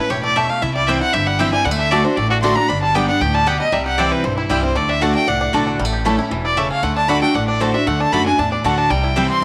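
A clear, focused fiddle with light vibrato takes the lead throughout this lively, virtuosic bluegrass excerpt, bowing an up-front solo over a brisk straight 4/4 drive. A bright, full-bodied picked dreadnought guitar sits up front beside it, while a twangy, percussive banjo plays arpeggios with fingerpicks and a pizzicato upright bass adds woody low end from 0.1 s. A mandolin enters at 0.4 s with stabs in the background, and a moderate echo-chamber reverb lends the ensemble a roomy sheen as the chords move through A, C, D and G.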